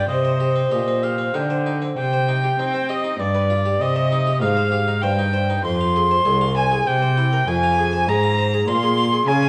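A rich, bowed cello sits up front as the bass of this grave, introspective baroque-style sonata movement in triple time, heard as an excerpt cut from a longer piece. A single violin carries the melody with vibrato and a smooth top. A clear oboe with light vibrato sings a second line in classical style. A bright, Italian-style harpsichord with one set of strings plucks a mid-forward accompaniment, and all four instruments play throughout. The opening phrase gives way to a new passage at 2.0 seconds, with the harmony darkening toward the subdominant minor near the close. A wet recital-hall reverb surrounds the ensemble, and the sound carries the worn, warbling pitch drift of old cassette tape.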